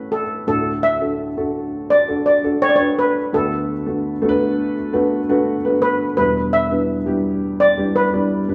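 Hopeful and warm, this short pop excerpt moves at an unhurried 84 BPM in a straight 4/4, tuned slightly low to A4 = 437 Hz. A dark, woody upright piano with a slightly detuned, vintage character carries the accompaniment from D2 to D5, moving from Bm7/D to Em7 at 6.2 seconds. Above it, a shimmering steel pan struck with soft rubber sticks sings the melody between A4 and E5, both parts sitting up front in a wet, large studio reverb that suggests a band playing live in one room.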